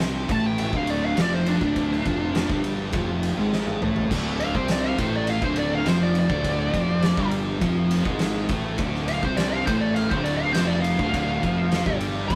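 Stoner and doom metal with a heavy, ominous mood, cut from a longer piece and built on a single D minor chord in a straight 4/4. Two thick fuzz guitars play the riff from the start, one dark and very quiet, the other distorted and sitting in the background, while a growly fuzz fingered bass with overdrive holds the low end. An oversized low-tuned drum kit sits up front with a punchy kick, fat snare and dark cymbals in a bright, pumping stone room, and a drum fill lands at 3.5 seconds. A double-tracked overdriven electric guitar joins the riff at 4.1 seconds. Over it all, a fuzz lead guitar with wah and distortion takes a solo from 0.3 seconds, its dark tone pushed to the front. The sound is a rough rehearsal-room recording with light reverb and saturation.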